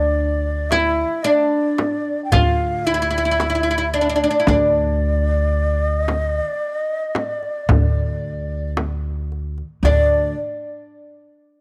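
In a straight 10/8 at 112 eighth-note beats per minute, this festive, stately Arabic maqam ensemble excerpt in D minor, tuned to A4 = 442 Hz, opens with an up-front, woody, plectrum-plucked fretless oud carrying the melody. A breathy low ney with vibrato sets a second line above it, and a dark pizzicato upright bass holds a steady D beneath. At 0.7 s a very quiet, close clay-shell darbuka and a small, bright frame drum join in, all within a light small-room reverb, before the music moves into a new section at 9.8 s.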